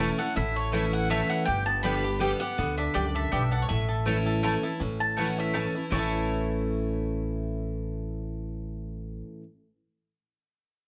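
A large studio room with a moderate reverb of about 1.0 s surrounds this short, joyful bluegrass excerpt, played at 162 BPM in a lilting 3/4 with a light swing in A mixolydian. A twangy banjo played with fingerpicks and a woody mandolin carry the melody together, both touched with plate reverb, the mandolin sitting higher while the banjo adds a percussive bite beneath it. A second, brighter mandolin supplies stabs across a broad range, and an up-front, full-bodied dreadnought guitar picks the accompaniment. Underneath, a growly, thumpy upright bass plucked on steel strings anchors the low end. The harmony moves from A to G at 1.5 seconds and back to A at 3.7 seconds, and the whole passage has a virtuosic, high-spirited drive.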